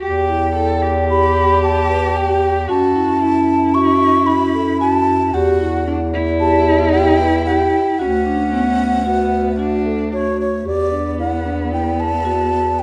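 Hypnotic and restless, this contemporary chamber piece in an uneven 5/4 meter moves at 113 BPM in E dorian, with an airy wooden baroque flute singing the up-front melody over a dark, bowed cello second line with portamento, ringing metallic vibraphone arpeggios struck with soft mallets, and a mellow subtoned bass clarinet holding the low end, all spread through a recital hall's reverb as the chords shift from Em through F#m7 and D6 to an unresolved E9sus4 near 10.7 seconds, shortly before this fragment of a longer piece breaks off.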